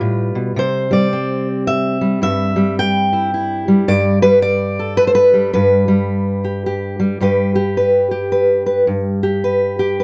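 In a lilting, swung 3/4 at 108 BPM, this nostalgic, peaceful folk excerpt in G major features a lone fingerpicked steel-string acoustic guitar, dark and up front with an auditorium-sized body and light reverb, moving from G7 to Cadd9 and settling on G at 3.9 seconds before a new section begins at 7.2 seconds.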